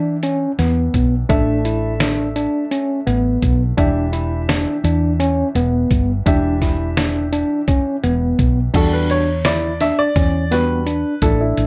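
A grand piano, clean tine electric piano arpeggios and a round, hollow-bodied fretless bass with lush chorus open this intricate, driving progressive instrumental in E dorian at 169 BPM in 7/8, joined at 0.2 seconds by a gritty, pitched-down sampler-style drum kit with a thumpy kick, all moving between Em7 and Asus4 in a dark production with light reverb before the grand piano takes a solo from 8.7 seconds.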